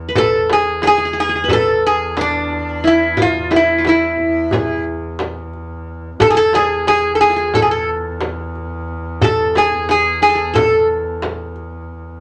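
Set in a nine-beat metre with a straight, even feel, this festive makam ensemble passage is cut from a longer piece. A bowed double bass holds an earthy, distant drone with light vibrato from the opening moment until 12.2 s. Up front, a metal-body resonator slide guitar carries the melody, its fingerpicked slide tone metallic and nasal. Behind it, a plectrum-plucked qanun adds a bright-edged second line from its triple strings. In the background, a deep clay-shell darbuka with natural skin and a small frame drum played with soft hands keep the rhythm, both sounding as if in a small room. A moderate studio reverb gives the ensemble a gentle sense of space.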